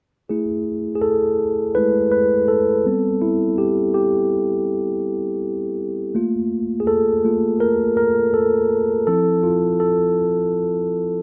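R&B fragment with a longing, moody air, in which a lone mellow tine electric piano plays clean, up-front accompaniment chords in the middle register with a light sixteenth-note swing, moving from Eadd11 through Gadd11 and Fadd11/A to a closing Fmaj7 at 9.1 seconds, all set in a moderate spring reverb.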